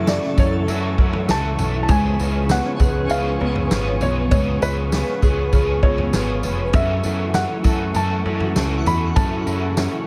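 Hazy and haunting, this straight-feel dream pop piece sets a felt-muted upright piano melody, intimate and soft with audible action noise and tape echo, over the fingerpicked twelve-string acoustic guitar's shimmering, octave-doubled arpeggios, complete with finger squeak. An overdriven, double-tracked semi-hollow guitar with harmonic tremolo and analog chorus, a flute-like tonewheel organ holding mellow chords with key click in the background, and a bright, direct picked electric bass fill out the harmony as it moves from F#m7 to C#7 and back. An up-front vintage drum kit with punchy kick, snare, tambourine and toms drives the small, lightly reverberant room, while a very quiet twinkling granular texture sparkles from 0.0 to 4.1 seconds and returns at 8.3 seconds.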